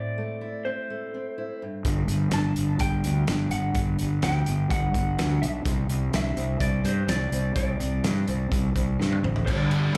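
This short cut from a longer live set sounds like a club gig heard through the venue's PA, with a light club reverb around the band. It is brooding, cathartic quiet-loud alternative rock in a straight 4/4 at 126 BPM, moving from Am to G, then Csus2, before landing on a G5 power chord. A fingerpicked steel-string acoustic guitar plays warm arpeggios while an electric guitar through a small old amp carries a lo-fi, slightly broken-up melody with slapback and tape echo. At 1.8 seconds a growly fuzz bass enters up front, joined by a loose indie kit with a fat snare, punchy kick and dark cymbals in a pumping small room. After a drum fill at 9.0 seconds, a scooped, distorted electric guitar riff enters at 9.5 seconds.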